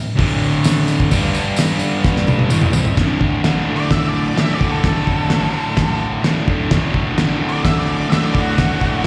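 Raw and swaggering, this garage rock excerpt from a live club gig pairs a bright, double-tracked fuzz guitar riff with slapback echo and a muffled, cloth-damped drum kit with a fat snare and dark cymbals, while a jingly tambourine sits in the background until 2.8 seconds, a drum fill runs from 2.0 seconds, and a dark octave-fuzz lead guitar with plate reverb carries the melody from 3.8 seconds.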